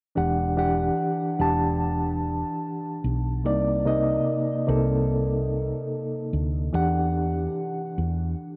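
A dreamy mix soaked in huge ambient reverb carries this smooth, introspective neo-soul R&B excerpt at 73 BPM in E minor, where a bright, reedy electric piano with light overdrive and fast tremolo plays up-front chords moving from Em9 to Cm9 and back to Em9 over a dark, round, woody fretless electric bass, with a swung sixteenth-note feel throughout.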